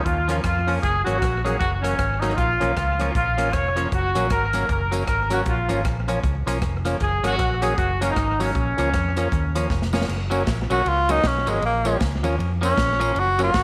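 Lightly reverberant and polished, this upbeat, cheerful swinging ska excerpt puts a clear, vintage horn section with slapback echo on the melody over twangy clean electric guitar, fat tonewheel organ stabs through a slow rotary speaker, round fingered electric bass and an airy big-band drum kit with dark cymbals, with a jingly tambourine joining in the background at 4.2 s before a drum fill leads into a breathy, intimate tenor saxophone solo at 10.1 s.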